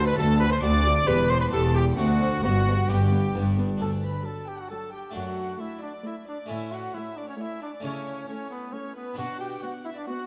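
A warm solo trumpet leads this festive, lively excerpt from a baroque-style concerto movement, carrying the melody in 3/4 at 134 BPM with a straight feel, in G major before moving to D major at 3.8 seconds. Around it, a close, reedy chamber violin section plays a second line with light vibrato and gut-string tone, while a second violin section, rich and smooth on top, adds a higher melodic line from 0.1 seconds. A brilliant, full Flemish-style harpsichord, plucked across three sets of strings, supplies accompaniment alongside a distant viola section sitting in the background. The bass is anchored by a bowed cello section and by a nasal studio double bass section that stops at 3.8 seconds, with the cellos continuing until 9.5 seconds. The chords move from D7 and Em to G, then through D, A and A/C# toward Bm, all set in a dark production with a moderate scoring-stage reverb of 2.0 seconds.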